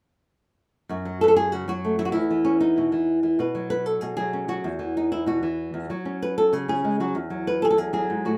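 A fingerpicked, woody flamenco guitar with the warm tone of old strings enters up front at 0.9 seconds and carries a proud, festive melody through chords such as F#m, Bsus2 and Esus2, with light reverb around it, in this short section cut from a longer piece that ends at 8.4 seconds.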